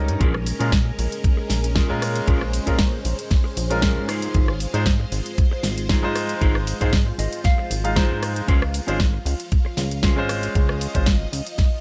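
A knocking, up-front electronic kick anchors this sensual, cosmic nu-disco excerpt, layered with a pop drum kit's fat snare, crisp hats, ride cymbal and rim clicks over a glossy, chorused synth bass with a plucky, retro pulse-and-sawtooth tone. A clear, polished baby grand piano with tape echo and a lush vintage string machine, treated with phaser, ensemble chorus and sidechain pumping, carry the chords from Bbm7 through Ab6 to Dbmaj7. A dark, fingered electric guitar plays a riff through lush chorus and tape echo, a clean electric guitar fill appears from 6.9 to 8.5 seconds, and the whole mix sits in a digital ambience.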